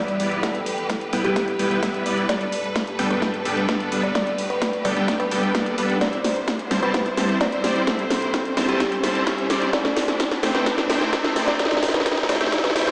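This festival progressive house build-up drives at 129 BPM in a straight 4/4, with a big-room dance drum kit pushing a huge snare and metallic hi-hats up front through a drum fill that runs the whole excerpt, while a punchy electronic kick sits very quiet beneath it from 0.4 seconds. The mood is emotional and anthemic, moving through Em, Gadd9, C and Am. A dense compressed supersaw carries the riff, thick and detuned with a sub octave and vibrato, colored by cassette tape, digital delay and sidechain pumping as a low-pass filter sweeps across it. A woody kalimba plucks a mellow, ringing melody with digital delay, and a lush bowed string section holds sustained chords in the background, pumping with the sidechain. A background riser enters at 3.4 seconds and runs to the end. The whole mix sounds played on a big sound system in a bare stone room, with a huge ambient reverb, a high-pass filter and a small-speaker character.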